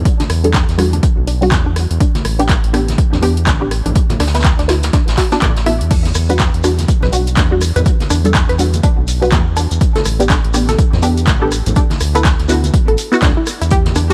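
A round, deep analog bass opens this late-night deep house excerpt in E minor at 123 BPM, pumping under a punchy, overdriven electronic kick up front, with a drum machine adding crash, handclaps, hi-hat and rim click, and a brushed vintage kit with rolled-off top sitting in the background over a 16th-note swing. A bright, chorused analog pluck arpeggio and a muted, detuned dub chord stab with phaser and delay both carry filter sweeps across Em7, A7sus4 and D69. Ringing congas and vinyl crackle surround them, and a grainy shekere joins at 5.9 seconds.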